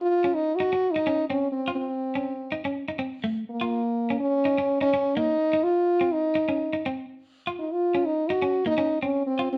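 A French horn opens this bittersweet highlife excerpt at 0.0 s, playing the melody up front in a classical, present solo voice over a 125 BPM groove in 4/4 with a light sixteenth-note swing. From 0.2 s a picked electric guitar accompanies it with a warm, slightly broken-up tone, while the chords move from Ebsus2 through F7, Bbm and Cmadd11 back to Ebsus2. The band sounds as if it is playing live in one room, with a moderate studio reverb lending the sound a gentle sense of space.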